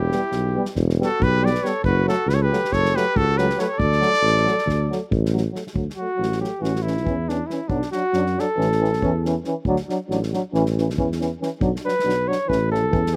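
A mellow trumpet carries the tune from the first moment, up front with light vibrato, over a punchy tuba bass and a warm flugelhorn second line touched by slapback echo, in this exuberant, virtuosic Balkan brass band piece in D major. The band drives along at 277 BPM counted in eighths in a straight 9/8, with a clear, distant euphonium and a soft-attacked trombone, also carrying slapback echo, filling out the accompaniment from the background. An acoustic drum kit played with bundle sticks adds a tight kick and a medium-tuned snare. The trumpet drops out at 5.1 seconds, and from 5.7 seconds the flugelhorn takes a vibrato-laden solo with a smooth top, while the harmony moves from the opening Em, F#m and D into a cycle around A, Bm and D. The sound is dry and open-air, with little reverb, and the passage is cut from a longer performance.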